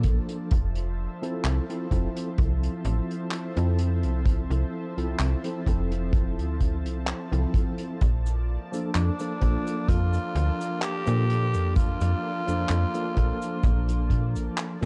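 A raspy, growling tenor saxophone enters at 9.0 s with breathy, scooped notes and light vibrato, its jazz-style solo trailed by tape echo, in this dreamy, woozy vaporwave piece at a slow 64 BPM in F major with a gentle swing on the sixteenths. Beneath it, a snappy, metallic slap-like FM bass and a punchy kick sit up front, while an unplugged kit played with bundle sticks adds cabasa, handclaps and hi-hat in an airy small room. A clean, bright tine electric piano with subtle chorus and tape echo and a thick, warbling, detuned unison pad with chorus drift between Bbmaj7 and Fmaj7 under a dark cassette-tape sheen.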